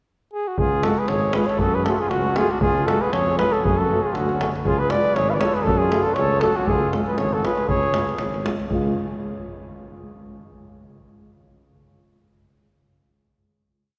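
A swung 2/4 pulse at 118 BPM drives this short, bittersweet and restless Balkan brass band piece in C# phrygian dominant, with a deep, band-limited davul playing a two-stick pattern and a soft-attacked tuba marking root and fifth on the main beats as the harmony rocks between C# and F#m. A warm flugelhorn enters alone at 0.3 s with a motif-based, song-like melody up front, joined from 0.6 s by a trumpet harmony line mostly in thirds, while French horn and a lightly vibrato euphonium sit in the background on offbeat chord tones. The mellow brass, all in classical style, rings out in a wet cathedral reverb before settling on a final chord at 8.7 s.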